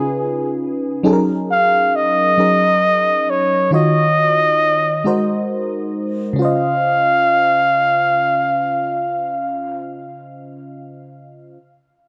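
A slow, swaying 6/8 pulse with a straight feel sets up this intimate R&B fragment, cut from a longer piece. A breathy flugelhorn carries the melody up front, its whispered, pop-style tone marked by vibrato, soft attacks and scooped notes. Beneath it, a mellow FM electric piano supplies dark, round chords with a noise layer, each one striking quickly and then decaying, colored by chorus and phaser. The harmony drifts through seventh chords before settling onto a lush major ninth at 6.4 seconds, where the second section begins. The horn falls silent at 9.8 seconds, leaving the piano to ring on alone until 11.6 seconds. A moderate echo-chamber reverb and small-room ambience give the whole a close, warm glow.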